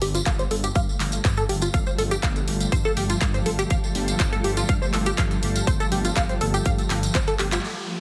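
Dreamy and expansive, this progressive house excerpt rides a straight pulse, with a punchy, overdriven electronic kick up front, an overdriven big-room kit of handclaps and hi-hat, and a jingly tambourine, all over a deep, rumbling detuned saw bass that pumps with the sidechain. A tight, driving sequenced synth plays arpeggios through chorus, phaser and dub echo under a filter sweep, while a shimmering, ethereal pad enters at 0.9 seconds with sustained chords on Fadd9/G. A drum fill at 7.4 seconds and an accent from the band lead into a downlifter at 7.6 seconds, with the pad hanging on until 8.0 seconds in a heavily compressed, radio-like mix with light digital ambience.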